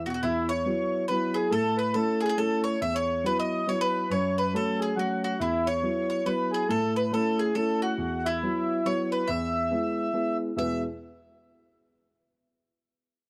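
A swung waltz in three drives this bright, lively Celtic folk fragment, where a reedy, airy accordion carries the melody up front over a boxy grand piano with long sustain, while a picked, double-strung bowl-back mandolin adds a second line, set in a dry, close 1970s-style small-room recording.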